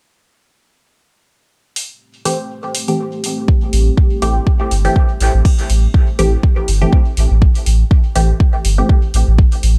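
Hazy, meditative dub techno at 122 BPM in A minor, cut from a longer piece, where a tape-warm vintage rhythm box with metallic hats and crash opens at 1.8 seconds, a muted, detuned sawtooth chord stab drenched in dub echo and phaser undergoes a filter sweep alongside a dark, chorused background pad over Am7, and a deep up-front kick and round, saturated sub bass arrive near 3.5 seconds, with sidechain pumping on the sub, stab and pad, as the harmony shifts to A7(no3) at 5.5 seconds.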